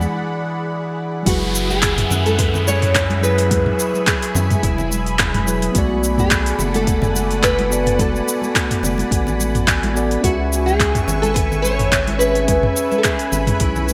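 A small, dark-toned nylon-string guitar carries the melody of this wistful sunset chillout excerpt, fingerpicked through chorus, delay and shimmer reverb over a mellow, clean tine electric piano and a lush, thick, detuned unison pad that glows with phaser. The opening break features a filter sweep on the electric piano. At 1.3 seconds a deep, tape-warm electronic kick arrives alongside a faint downlifter, joining a round analog bass, an up-front deep house kit with metallic hats, handclaps, cabasa, toms and gated reverb, and bright hard-hand congas set in the background. From 3.0 seconds an airy, breathy wind-like noise texture drifts in the background, all within a bright 1980s-style digital production and a moderate, lush hall reverb.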